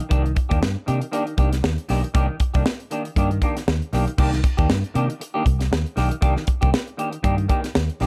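Funky and driving, this short funk cut in C minor moves at 118 BPM with a light sixteenth-note swing, built on a tight, dry, high-tuned drum kit of kick, snare, hi-hat and crash, a dark, round, foam-muted fingered bass that enters at 0.1 seconds, and an up-front, clean semi-hollow electric guitar comping on Cm9, its hollow tone bathed in lush chorus and plate reverb while the rest of the mix stays close and punchy.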